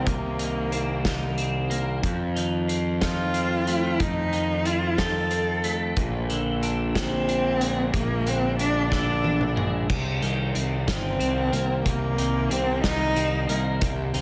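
A slow 6/8 sway at 61 BPM, counted in dotted quarters with a straight feel, carries this melancholic, cinematic post-rock passage in C minor, cut from a longer piece. A loose acoustic indie drum kit comes in at 0.1 s with a punchy kick, medium-tuned snare, hi-hat, toms and dark cymbals, set up front in a pumping small room, and plays a fill from 8.9 s to 9.9 s before the section repeats. Beneath it, a fuzz picked electric bass sits up front with a round, overdriven tone, while a bright, twangy twelve-string electric guitar picks clean, compressed arpeggios through ensemble chorus and slapback echo. Over the harmony, which moves from Cm7 to F7 and Bb7 before returning to Cm7, a single bowed cello sings the melody with a soft attack, expressive vibrato and portamento, its rich voice up front and touched by slapback echo. Light reverb and small room ambience hold the whole ensemble close together.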